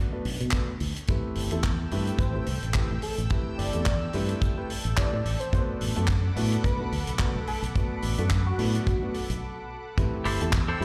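Nu-disco at 108 BPM in A dorian, this sleek, cosmic excerpt moves with a light swing on the sixteenths over a chord sway between Bm7 and Am7. A dark, mellow grand piano opens the cut, its smooth vintage tone roughened by 12-bit sampler grit and trailed by dub echo, while a tight funk drum kit with handclaps and hi-hat and a dry, rolled-off kick drum up front arrive within the first half second. A fingered electric bass sits forward too, bright and amped through an envelope filter. A lush, detuned unison pad fades in behind, thick with chorus and phaser and pumping against the sidechain, and from 2.2 seconds a bold sawtooth lead with a sub octave and vibrato carries the melody through tape echo until a short break at 9.4 seconds. At 10.3 seconds a clean, picked semi-hollow electric guitar slips in with a chorused riff, and the whole mix carries the bloom of a big system in a bare room under large studio reverb.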